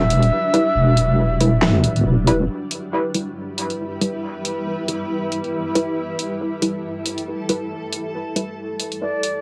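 A deep, chorused square-wave wobble bass sits up front for the first 2.5 seconds of this meditative, dark half-time dubstep excerpt, beneath a breathy, reedy ney melody with vibrato and dub echo that returns briefly at 9.0 seconds, a blurred granular cloud pad holding sustained chords through 12-bit grit and its own reverb, muted sawtooth chord stabs trailing echo, and an overdriven, cassette-worn electronic kit of huge snare, bright hats and handclaps in a small booth.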